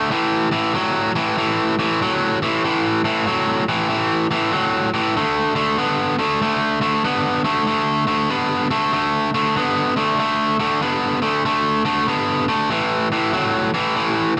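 A biting, overdriven electric guitar plays solo, picked and up front, through this soulful, rollicking blues excerpt at 95 BPM in 4/4 with swung eighths, moving from A5 to D5 at 5.2 seconds and back to A5 at 12.7 seconds in a low register, all set in a moderate studio room with a softened top end.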